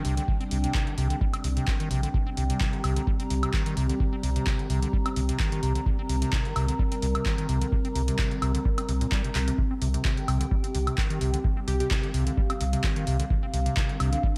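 A squelchy, resonant square-wave acid bass riff in C minor drives this gritty, hypnotic acid house excerpt at 129 BPM. It rides over a round sine sub bass, a detuned, moody analog pad and a warbling, lo-fi tape-like pad in the background, with the bass and pads pumping under sidechain. From 0.3 seconds a deep electronic kick joins an overdriven analog drum machine of handclaps, hi-hat and woodblock with a gentle 16th-note swing, and a drum fill lands at 9.4 seconds before a brief, punchy unison lead note with tape echo flickers at 11.7 seconds.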